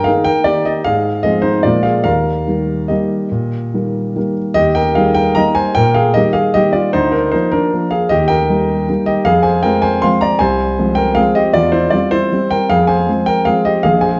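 Classical piano waltz in triple metre, played with free rubato in a playful, elegant mood, heard as a short cut from a longer piece. A solo grand piano carries the whole passage, sitting up front with an intimate, natural tone and audible action noise, and a fresh second section begins at 4.6 seconds. The dark production sets the instrument in a moderate recital hall reverb.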